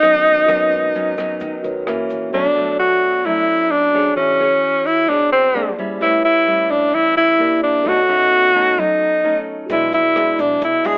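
An intimate, smooth bossa nova excerpt in B minor at 130 BPM opens with a breathy, subtone tenor saxophone carrying the melody up front with vibrato, over a clean, bright tine electric piano in the background and a full-bodied, fingerpicked nylon-string guitar with audible finger squeak. A woody, pizzicato upright bass and a compact cocktail drum kit with a punchy kick and rim click sit low in the mix, joined at 0.3 seconds by a very quiet, grainy egg shaker. All three drop out at about 2.3 seconds, leaving saxophone, piano and guitar to drift through rich extended chords before the rhythm returns at 9.7 seconds, all under light reverb and a telephone-like sound.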